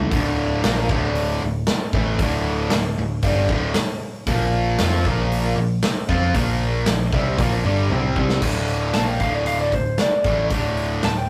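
Heavy, menacing hard rock at 115 BPM in D minor, cut from a longer piece, where two overdriven electric guitars, an up-front distorted one and a cranked stack, churn out a bright picked riff over Dm and Bb5 chords, backed by a growly, punchy picked bass and a big acoustic rock kit with glinting cymbals and a thumping kick, until a drum fill at 7.9 s opens the solo section and a dark, slightly broken-up, compressed lead guitar enters at 8.9 s, all in a rough rehearsal-room sound with tube saturation and wet studio reverb.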